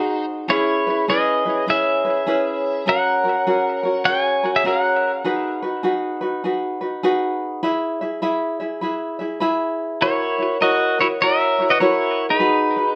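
Sunny and languid, this Hawaiian passage, cut from a longer piece, sways at 101 BPM in 4/4 with swung eighths over chords moving from C#m7 through F#add9, G#m7 and E to F#7 and B6. A warm, clean electric pedal steel guitar carries the melody up front, played with fingerpicks and slide, with compressed volume swells bathed in plate reverb and delay. A mellow, ringing vibraphone with soft mallets and its motor off adds a quieter second line, while a light, fingerpicked acoustic tenor ukulele plays the accompaniment throughout and holds the groove alone between 5.1 and 10.0 seconds.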